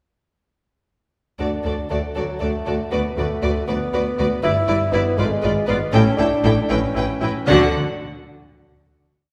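Quirky and playful, this short, whimsical film cue in a lilting 6/8 opens at 1.4 s with the full string ensemble and a bassoon entering together. A distant, smooth violin section carries the melody in repeated notes with vibrato, while a second violin section, closer but tucked into the background, adds an expressive line beneath it. The mellow bassoon sits up front in a close-miked, classical style, its light vibrato giving the texture a gently comic character. Lush violas fill the middle with sustained chords, a clear cello section plays repeated bass notes, and a focused double bass section doubles the bass line beneath. The harmony moves from D through a diminished chord and a suspended A7 before settling on a final D chord at 7.5 s, all bathed in the wet reverb of a scoring stage that places the players further back in the room.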